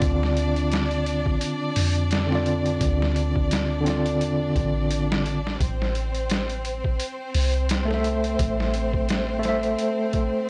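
Brooding and melancholic, this trip hop excerpt in D minor moves at 86 BPM with a lightly swung 16th feel, as a clean tine electric piano through a combo amp sits up front with tremolo and tape echo over sustained, vibrato-rich chamber violin chords carrying 12-bit sampler grit, a round, deep 808-style bass that drops out at 9.8 seconds, and an overdriven, pitched-down boom bap kit with a thumpy kick and high-tuned snare, all shifting from Dm7 to Am at 5.6 seconds in a dry, cassette-tinged recording.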